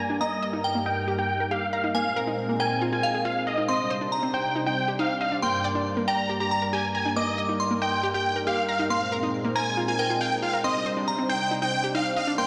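Soaring and driving, this trance passage in C minor moves at 138 BPM in a straight 4/4, cut from a longer piece. A huge, euphoric supersaw lead carries the melody up front, its detuned sawtooth unison compressed and sustained, with a filter sweep running across the full 12.5 seconds and a dub echo trailing behind it. Above it, a glassy, crystalline FM bell plays a second line with a vintage warble, its decaying notes shaped by chorus, tremolo and delay. A lush, thick unison pad with a nasal edge and soft attack holds sustained chords through the progression from Eb/G to Bb7sus4, Cmadd9 and Gm, while a round analog pluck spins chorused arpeggios with short decay and its own dub echo. The whole is bathed in a moderate hall reverb with a 2.7-second tail, heard as if played on a big sound system in a bare room.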